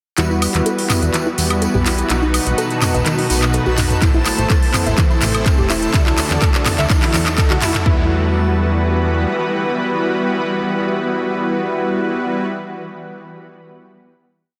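Bittersweet and emotional, this short progressive house piece at 125 BPM in E minor builds from 0.2 s to 7.9 s under a filter-swept unison pluck arpeggio, a plucky analog bass, a soft supersaw's held stabs with syncopated pushes, a shimmering ambient pad, a house drum kit with metallic hats, clap and woodblock, a jingly tambourine, overdriven electronic toms and congas, a reversed swelling texture, a very quiet riser and, from 4.0 s, a punchy pop kick and floor tom, before resolving at 7.9 s onto a final Emadd9 chord held in huge ambient reverb.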